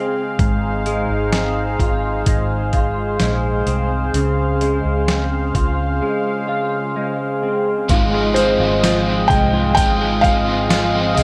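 Light reverb and a digital ambience surround this dreamy, ethereal dream pop excerpt, where a warbling, detuned analog pad holds sustained chords up front while a clean semi-hollow electric guitar plays arpeggios through ensemble chorus and delay. From 0.4 seconds a gritty, pitched-down, sampler-style trip hop kit with a thumpy kick joins a round, foam-muted fingered bass, as the harmony moves from Ab6 to Dbmaj7 and back. At 7.9 seconds a biting overdriven guitar adds picked accompaniment with tremolo and analog chorus, and a felt-muted upright piano with audible action noise carries a mellow, intimate melody from 8.3 seconds.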